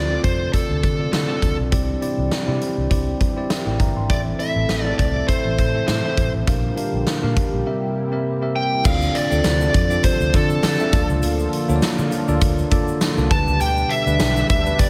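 This 1980s-style pop excerpt in D minor moves at 101 BPM in 4/4 with a light swing on the sixteenths, and its mood is moody and dramatic. A dark, overdriven lead guitar carries the melody up front, picked and smooth, with delay trailing its lines. A bell-like tine electric piano plays clean, direct accompaniment, while a chorused pulse-width pad holds shimmering, retro sustained chords in the background. A foam-muted fingered electric bass gives a round, punchy low end, and a big rock drum kit with crash, hi-hat, punchy kick, medium-tuned snare and tambourine plays with gated reverb, entering at 0.2 seconds. A grainy, distant egg shaker joins at 8.8 seconds as the harmony shifts from Dm7 toward Bbmaj7 and G, all inside a small room ambience with light reverb.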